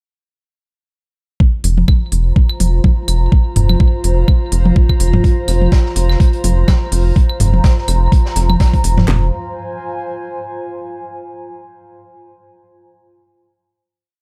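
Minimal techno at 125 BPM in F minor, quirky and hypnotic, with a light swing on the sixteenths and a short groove over an Fsus4 chord that settles onto a held final chord at the close. A layered, tape-warm garage kit sits up front from 1.4 seconds, driving a four-on-the-floor knocking kick with a cracking snare, claps and floor tom, joined by clicky programmed electronic hi-hats in studio reverb. A rubbery, hollow square-wave bass plays off-beat on a low F, dark and resonant with a fast filter pluck and sidechain pumping. Analog electronic toms and claves scatter clicks and blips in cross rhythm through tape echo, and from 5.2 seconds a quiet, high-passed vintage acoustic kit adds a looped, edited breakbeat with a high-tuned snare and a rolled-off top. Behind it all a warbling, nostalgic lo-fi pad of detuned sawtooth and triangle tones drifts through slowly shifting chords with chorus, phaser and sidechain pumping, lingering alone until 11.0 seconds.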